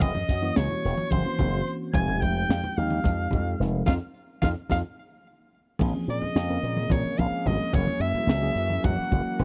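Electric jazz fusion in a driving, nocturnal mood, this brief section cut from a longer piece moves at 217 BPM, counted in eighths, in a straight 7/8 and shifts from F minor to Bb minor at 5.8 seconds. An edgy, forceful soprano saxophone with vibrato carries the melody, joined by an airy metal flute playing a soft-attacked, expressive second line until 4.8 seconds. Underneath, a bright, punchy slap bass through an envelope filter sits up front beside a polished acoustic drum kit with a high-tuned snare, punchy kick and dark cymbals, while ringing congas sit in the background. A worn, slightly out-of-tune tine electric piano, lightly overdriven through a combo amp with subtle chorus, supplies mellow chords over harmonies such as Gb7#11, Fm9 and Bbm9. A drum fill and band accent arrive at 3.9 seconds, and with the key change a very quiet, evolving, detuned sawtooth pad with a resonant filter swell adds sustained chords. 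The dry, close small-room sound recalls a 1970s studio recording.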